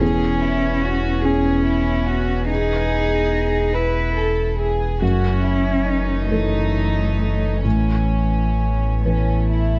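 Neoclassical piano and strings in a melancholic, fragile mood, moving slowly at 47 BPM in 6/8 with an uneven, rubato feel across this short 9.8-second excerpt. A studio violin section carries the melody with a pure, floating sul tasto tone, while a single intimate, airy-bowed cello with light vibrato plays a second line over a felt-muted upright piano whose dark, mellow accompaniment lets its action noise be heard. A rich chamber string section holds soft-attack chords in the background, and a deep sine sub bass sits up front underneath. The close, detailed recording carries light reverb as the harmony passes from E6 to F#m7 at 5.0 seconds and Aadd9 at 7.6 seconds.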